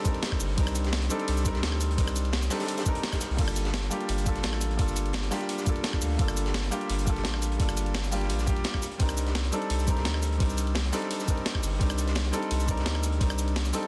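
A polished grand piano sits up front in this rolling, soulful liquid drum and bass excerpt, its short-sustain accompaniment between G3 and Bb4 carried by a digital delay. Beneath it, a deep, round sine sub bass holds sustained notes from G1 to D2, entering at 0.4 seconds with a fast attack. A compressed, thumpy electronic kick drives the straight 4/4 groove, while a gritty sampler-style breakbeat kit supplies crash and ride cymbals, hi-hat, rim click, shaker and a medium-tuned snare. A second breakbeat kit, dark and saturated with a rolled-off top, adds very quiet hi-hat and snare from a small acoustic room. The harmony moves from Cm9 to Gm9 and returns to Cm9 at 8.8 seconds, set in light reverb and a dense, heavily limited modern master.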